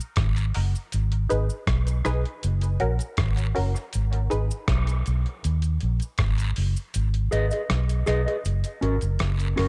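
A dark production with little reverb gives this short dub reggae cut from a longer piece a close, heavy, hypnotic feel at 80 BPM in 4/4 and G# minor, with a straight pulse moving through D#m, G#m and F#. Up front, a round, foam-muted vintage fingered electric bass sits low and amped, while a compressed, sampler-style soul drum kit brings gritty hi-hat, rim click and a thumpy kick. Quietly underneath, a high-pass-filtered cabasa and guiro layer of tube shaker and group handclap sounds close and dry, trailing dub echo. A muted, detuned chord stab of sawtooth and pulse waves plucks through a filter with a fast attack and short decay, coloured by phaser and echo, until it stops at 4.5 seconds. The kick falls silent from 6.9 seconds, and at 7.3 seconds a mellow, clean, fingered electric guitar enters with its own dub echo to carry the remaining bars.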